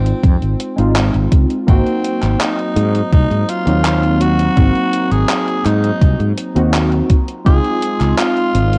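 The recording has a cassette-tape haze, with light reverb and a digital ambience that give this dreamy, woozy vaporwave fragment a faded, nostalgic quality. It sits at 83 BPM in a straight 4/4 in Db major, drifting from a rootless Dbmaj9 to Ab9 and settling back on Dbmaj9 near the close. A raspy, growling tenor saxophone carries the jazz-style melody with a soft attack and an analog delay trailing behind it, while warbly, detuned lo-fi synth keys add mellow, decaying chords through a lush chorus and their own delay. Up front, a fretless electric bass holds the low end with a direct, warm tone, and a thumpy electronic kick drum, tape-warmed and re-recorded in a small room, drops out at 7.6 seconds. A gated 80s digital drum machine adds handclaps and hi-hat bathed in gated reverb. From 2.0 seconds, a dark, very quiet tape-like pad swells in slowly beneath everything, its long release blurring the edges of the chords.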